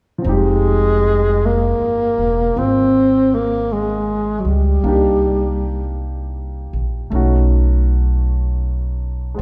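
A slow swing at 53 BPM in 4/4 sets the pace for this intimate, smoky jazz ballad in F minor, a fragment cut from a longer piece. An upright bass carries the low end from 0.2 s, its pizzicato gut strings sounding woody and thumpy, placed up front in the mix. A baby grand piano provides warm, natural accompaniment across the same span, while the harmony moves from Fm9 through Cm7 to B9. A breathy tenor saxophone takes the solo melody from 0.3 s to 6.0 s, dark and whispered in a subtone with soft attacks, scooped notes, a smooth top and vibrato, close and up front. A wet recital hall reverb with a 1.7-second decay wraps the recording in the lingering air of a church or concert hall.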